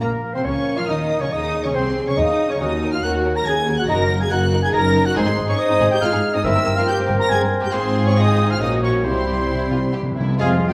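This stormy excerpt from a fast, dramatic romantic orchestral movement in B-flat minor opens with most of the ensemble at once at 140 BPM in a straight 3/4. A rich, lush violin section carries the high melody with vibrato and a soft attack, sounding somewhat distant. Beneath it, a very quiet, pure-toned flute, a mellow oboe, a roomy clarinet and a darker second violin section weave supporting lines. A vintage-tinged bassoon and a smooth viola section fill the accompaniment, while a ringing, fingerpicked harp plays arpeggios. Woody cellos and a double bass section with portamento anchor the bass, and a mellow French horn section sustains chords from just after the start. The harmony turns through E-flat minor and A-flat toward C, with a small-room timpani fill entering at 9.1 seconds and a brief trombone chord and close-miked trumpet stab landing at 10.4 seconds, all bathed in a recital-hall reverb.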